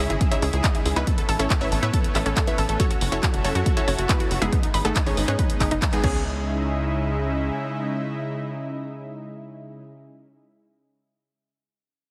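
A heavily compressed, radio-style mix with light reverb carries this euphoric yet bittersweet uplifting trance drop, cut from a longer piece, where a lush, detuned unison pluck leads the melody with tape echo and sidechain pumping over a silky, string-like analog pad and a very quiet, clear grand piano tracing a second line. Beneath them a tight, nasal sequencer bass drives with punchy, decaying notes, and a round analog pluck plays chorused arpeggios in the background, while an up-front layered electronic kick and a techno kit of crash, handclaps and hi-hat, both re-recorded in a large room, mark a band accent at 5.8 seconds. The drums drop out at 6.1 seconds, the arpeggios follow soon after, and the bass stops at 7.5 seconds, leaving lead pluck, pad and piano to close.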